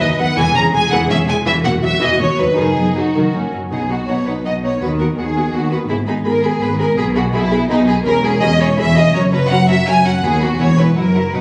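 A brisk, straight 3/4 pulse at 165 BPM drives this graceful, cheerful classical-period movement for string orchestra in B major, cut from a longer piece. The first violins carry the melody with a rich, lush vibrato and a smooth top, while the second violins sit up front on a focused second line. Violas fill in the accompaniment with a warm, bowed tone, and beneath them the cellos stay in the background, dark and intimate with a soft attack. The double basses anchor the bass with close, expressive playing and touches of portamento. A short opening section gives way at 3.7 seconds to a second section that moves through B, G#m and C#m7/E before closing on F#7. A moderate scoring-stage reverb surrounds the ensemble, though the sound was captured on a phone in the room and carries a club-like ambience.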